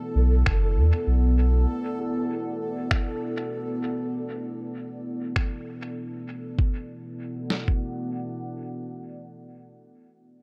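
A deep, dark ambient pad sits up front in this short cut from a longer ambient dub piece in B minor, holding sustained chords from the opening, beginning on Bm7, until 9.8 seconds with a slow attack, long release and a moody, warbling character roughened by vintage 12-bit sampler grit, chorus and its own reverb. Beneath it, a round sine sub bass with a mellow, warm tone appears only briefly near the start, sustaining low notes. A bubbling stepped-filter texture with a resonant sawtooth edge hovers on a single note through the opening section, ending at 6.6 seconds as a second section begins. A lo-fi sampler-style drum kit, muffled and pitched down with a thumpy kick and medium-tuned snare, keeps a swung 16th-note groove at 98 BPM in 4/4. Compressed electronic finger snaps float over the kit through dub echo, giving the deep, spacious mix its echo-heavy, dry-roomed feel.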